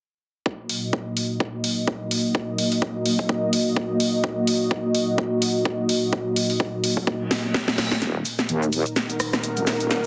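Over a swung, bouncy 4/4 house groove of a punchy, tape-warm kick and a cracking snare with hi-hat, rim click and shaker, this gritty bass house clip rides a deep, moody analog pad pumping in sustained chords, until a very quiet reverse cymbal and riser at 7.2 seconds lead into a build-up where a heavy, saturated wobble bass enters at 8.0 seconds and an ethereal, airy pad with tremolo joins at 8.7 seconds, all pressed into a heavily compressed radio sound with moderate room reverb.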